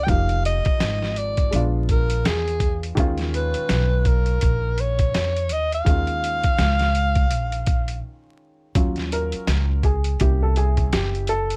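This smoky, cool jazz-hop excerpt opens with a breathy alto saxophone carrying the melody over a slightly detuned upright piano and a pizzicato upright bass, all set against a bed of vinyl crackle. A gritty, pitched-down boom bap drum kit joins a moment later, its thumpy kick, medium-tuned snare and hi-hat sitting compressed and up front with a lazy sixteenth-note swing. The saxophone sounds intimate and whispered, with a soft attack, vibrato and a touch of plate reverb, while the growly, woody bass on steel strings anchors the low end beneath chords moving from Fm7 through Bb7b9 to Ebsus2. The saxophone drops out at 8.0 seconds for a brief break, and from 8.8 seconds the short-sustain piano steps forward for a solo over Ebm9 and C7b9, with bass and drums continuing beneath it. The room stays dry and close, and the excerpt is cut off at 11.6 seconds.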